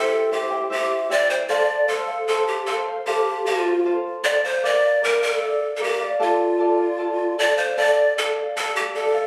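Large cane pan pipes, breathy and bright with a chiffy attack, unsteady vibrato and a plate-reverb sheen, carry the melody up front across this melancholic, earthy 9.3-second Andean folk excerpt in D minor at 76 BPM in 2/4, over a fingerpicked charango whose shimmering double strings move through C, F, Bb and Dm, all captured on a phone in a room with club-like reverb and compression.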